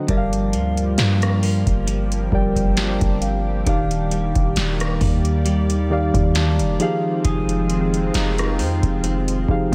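Moody and sensual, this contemporary R&B fragment, cut from a longer piece, moves at an unhurried pace with a light swing on the sixteenths. Muted, felt-like synth keys sit up front with a dark, intimate, warbling tone and a filter sweep. A lush unison pad holds sustained chords, its thick, detuned sound treated with chorus and sidechain pumping. A clean electric guitar picks compressed, twangy arpeggios through lush chorus and digital delay, while a worn, slightly out-of-tune celesta adds a delicate, bell-like figure in the background until 4.1 seconds. Underneath, a deep, boomy 808-style bass and a booming analog drum machine with a crisp snare, rim click and metallic hats drive the groove from 0.1 seconds. The harmony moves from Gm7 to Ebmaj7 to Fm7 in a dry, close-sounding mix.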